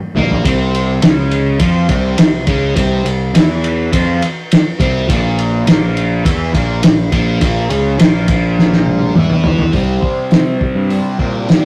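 A cloth-damped, thuddy drum kit sits up front with a fat snare, tight kick and dark, muffled cymbals, rolling into a fill at 8.6 s, while an overdriven fuzz bass and a bright, double-tracked fuzz guitar with distortion and phaser drive a mysterious, trippy psychedelic rock riff at 104 BPM in straight 4/4, moving from Csus4 to Bbm before landing on C5 at 9.7 s, captured as a rough rehearsal-room recording with saturation and light reverb, tuned to A4 = 436 Hz, in this short cut from a longer piece.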